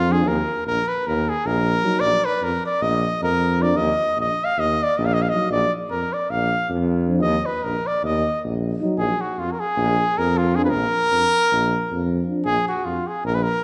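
A soft-attacked, warm cornet leads up front with the melody in this fiery, virtuosic Balkan brass band piece. It moves in a straight 9/8 at 310 BPM in eighths, in Bb phrygian dominant over a Bb5 harmony. The tuba carries the bass with light vibrato and a distant, roomy tone, while two mellow euphoniums in classical style sit in the background as accompaniment from 0.1 to 12.4 s, one sounding far off and the other touched with gentle vibrato. The whole fragment, cut from a longer piece, is bathed in the wet reverb of a recital hall with a softened, dull top end.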